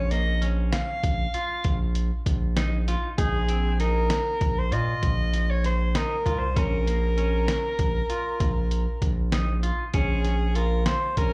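Intricate and tense, this progressive instrumental, cut from a longer piece, moves at 195 BPM in eighths, counted in 11/8 with a straight feel in Bb minor. A soprano saxophone carries the melody between Ab4 and F5, its jazz-style tone punchy and forceful with light vibrato, sounding roomy yet up front and touched by slapback echo. Underneath, a round analog bass sits deep and mellow from Bb1 to Bb2, while a clean electric guitar picks dark arpeggios between Bb3 and F4, dressed in slapback echo and digital delay. A trip hop sampler-style kit of hi-hat, thumpy kick and medium-tuned snare sounds compressed, pitched down and gritty. The harmony moves from Bbm to an F7 voicing over Bb, falls away to an unharmonized stretch at 6.6 seconds, and returns to the opening section on Bbm7 at 9.9 seconds, the band heard as a live gig through a venue PA with club reverb.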